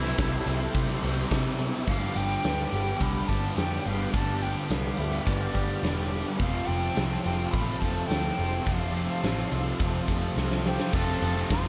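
A huge arena drum kit sits up front in this hazy, blissful shoegaze and dream pop excerpt at 106 BPM in 4/4, its punchy kick, fat snare and bright cymbals ringing in a hall-like space and capped by a fill at 10.4 seconds. Behind it, three guitars build a dense riffing wall: a thick fuzz guitar with lush chorus, a biting overdriven guitar treated with reverse reverb, and a sludgy, double-tracked distorted guitar. A vintage muted picked electric bass anchors the low end with a dark, round, foam-muted tone. Floating above is a distant silver concert flute carrying the expressive melody with vibrato and slapback echo, while a very quiet, silky analog string pad holds sustained chords and a shimmering, octave-doubled twelve-string acoustic guitar picks soft arpeggios. A jingly tambourine sits in the background. In F lydian, the harmony moves from C6 to G7 at 1.9 seconds and to Fmaj7 at 6.4 seconds before settling on F, all bathed in light reverb.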